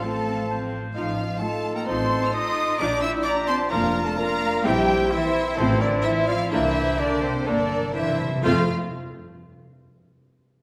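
A stormy, urgent orchestral passage in F major at 128 BPM opens with a clear, focused violin section carrying the melody over rich cellos and lush double basses, while a warm violin section, a pure, very quiet flute ensemble, a bright oboe and a punchy clarinet add second lines behind it. A dark, distant bassoon and smooth violas fill in the accompaniment, a very quiet French horn section holds sustained chords and a mellow trumpet adds stabs with a soft attack, all within a wet concert-hall reverb. The quick classical-period movement moves with a rubato feel through F, B-flat and C7 harmonies, and round, soft-mallet timpani enter at 6.5 seconds with a fill that leads into the arrival on F at 8.4 seconds.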